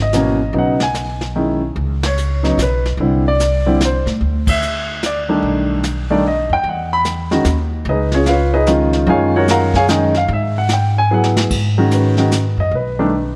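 Light reverb gives this short jazz piano trio cut a close, intimate sound, with a natural-toned baby grand and a woody, growly upright bass sitting up front. The mood is cool and moody, swinging at 148 BPM in 3/4 time. The piano carries the melody across a range from B2 to B5, while the pizzicato bass on steel strings anchors the low end from G#1 to A2. A dark, smooth brush kit recorded in a small room adds brushed snare, hi-hat, ride, crash and a punchy kick, its rolled-off cymbals sitting further back in the mix. The harmony moves from G#m7 through Bsus2, Cadd9, C#9 and F#maj9 before settling back on G#m7, with the band hitting accents at 2.0 and 4.4 seconds. A short drum fill from 11.1 to 11.5 seconds leads back into the opening theme, closing on a B7alt chord.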